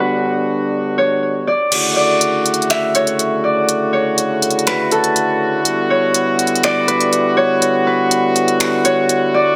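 Ethereal and hazy, this atmospheric cloud-rap fragment, cut from a longer piece, moves at 122 BPM in 4/4 with a half-time feel and is tuned to A4 = 442 Hz. A mellow brass ensemble holds sustained chords throughout, its classical-style section sound roomy and softened by a low-pass filter, carrying a light vibrato. Over it a fingerpicked Celtic harp sings the melody in a ringing, acoustic tone, dulled by a low-pass filter and trailed by tape echo. The opening passage carries a filter sweep over a rootless Em9 before the harmony moves to Dmaj9 at 1.7 seconds, where a smooth, electronic R&B drum kit enters up front with crash cymbal, finger snaps and smooth hi-hats. The chords return to Em9 at 5.7 seconds. A moderate, lush hall reverb with a 2.1-second decay wraps the mix in a dreamy haze.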